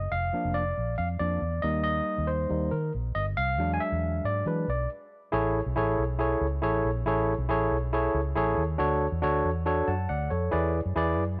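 Set in light reverb with both parts up front, this joyful, uplifting excerpt of uptempo 1960s-style soul moves at 138 BPM in a straight 4/4. A barky, clean tine electric piano pushed through a combo amp takes a solo over Bb/F, Eb and E7 before a brief stop at 4.9 s, while the dark, round, foam-muted fingered electric bass anchors the music from the opening. The music then settles into A major at 5.3 s, with the bass and piano moving together through Amaj7, Dmaj7 and E7.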